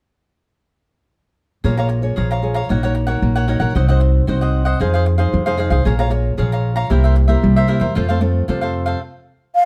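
A thumpy, woody upright bass sits up front in this lively, yearning samba, plucked pizzicato on steel strings and holding down the low end from 1.6 seconds. Around it, a full-bodied, fingerpicked nylon-string guitar in classical style and a mellow, crisp picked cavaquinho fill out the accompaniment in a straight 4/4 at 114 BPM. The harmony stays in Bb minor, moving from Bbm7 through Ebm7/Bb, Cdim, Fm7 and C7 before settling on F, with the ensemble tuned to A4 = 443 Hz. The accompaniment falls away just before 9 seconds, and at 9.6 seconds a baroque flute steps forward with a single brief, airy note, its wooden tone carrying vibrato and a crisp attack. Light reverb gives the acoustic instruments a natural sense of space in this short cut from a longer piece.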